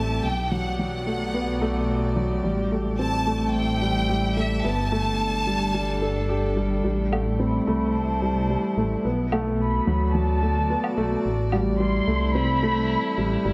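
A dark, mellow concert grand piano riff sits up front from the start, its action noise audible and its low end deep, with tape echo trailing its notes, while a rumbling, detuned saw bass with tube saturation beats beneath it. This is cinematic, hypnotic piano and strings electronica at 109 BPM in A dorian, cut from a longer piece and moving through Bm7, Am7 and Gsus2. Above, a muted string quartet holds veiled, con sordino chords with soft attack and vibrato, and a clear, focused chamber violin section carries the melody from a distance through a low-pass filter and tape echo. At 6.8 seconds a build-up begins, with a filter sweep on the violins, and a small-room woodblock played with brushes, mid-forward and rolled-off on top, joins from 7.1 to 11.6 seconds. A moderate concert hall reverb gives the strings and piano a spacious, chamber-like setting.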